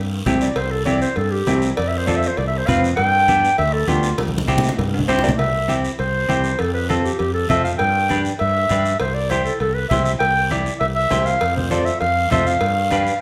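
A band playing live together in one room, bathed in lush studio reverb, carries this festive, danceable cumbia excerpt. The mellow, smooth clarinet sits up front with a classical-style solo through the first 5.4 seconds, over a bright, growly, punchy fretless bass and a dark, clean, fingered semi-hollow guitar. Thick-skinned, damped, low-tuned congas and ringing metal-shell cowbell and timbales sit in the background with a raspy, saturated guiro, and a drum fill at 4.2 seconds leads into the second section.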